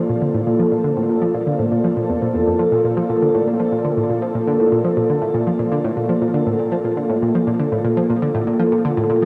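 Cosmic and expansive, this fragment of ambient, sequencer-driven space music opens with a full-bodied, evolving resonant pad of detuned sawtooth and sine layers over a sub octave, holding slow-attack chords treated with chorus, cassette tape and shimmer reverb. At 0.1 s a bright, round analog pluck enters with a low riff, its sawtooth, square and triangle tones edged with noise and ring modulation under a filter sweep, and it sits up front with the pad through analog delay and chorus. Both float in a wet spring reverb with a homemade cassette grain.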